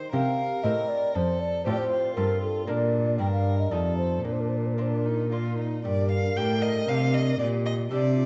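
Classical baroque-style sonata movement in Bb major at 117 BPM in a straight 3/4, grave and introspective, where an airy, hollow concert flute with vibrato carries the melody from 0.1 seconds over a second line from an expressive bowed violin with soft attack and portamento, delicate fingerpicked gut-string lute accompaniment, and an up-front cello bass, all moving from Cm7 through F and Bb to close on Gm/Bb, in a dark production with moderate recital hall reverb, cut from a longer piece.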